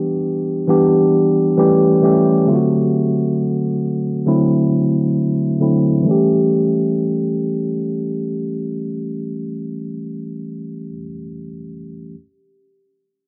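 This moody R&B excerpt moves at a slow 67 BPM in 4/4, with a light swing on the sixteenths that gives it a relaxed, longing feel. A mellow tine electric piano carries the whole piece as accompaniment, playing from 0.0 to 12.2 seconds in a range from D3 to G4. Its clean tone sits up front and comes through built-in speakers. A filter sweep colours the opening passage until 6.1 seconds, when a second section begins. The harmony moves from Em7 to A7 and D7, then returns to A7 at that turn. A soaked spring reverb and the hazy, dulled character of a home cassette recording wrap the sound in a dim, intimate atmosphere.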